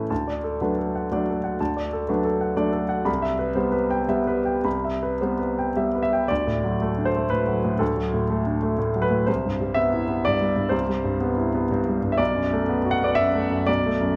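A clear, polished grand piano plays alone through this short passage of neoclassical minimalist piano music, sitting up front and present in the mix with the sound of its action audible. The mood is intimate and tender, set in a triple metre with a free, rubato feel. The harmony moves gently between D and Cmaj7, and the same movement begins again at 6.3 seconds before settling onto Bm7 at 12.2 seconds. The piano spans a broad range from deep bass notes to bright upper tones. A moderate scoring-stage reverb gives the instrument a spacious tail, and the passage is cut from a longer piece, closing at 14.2 seconds.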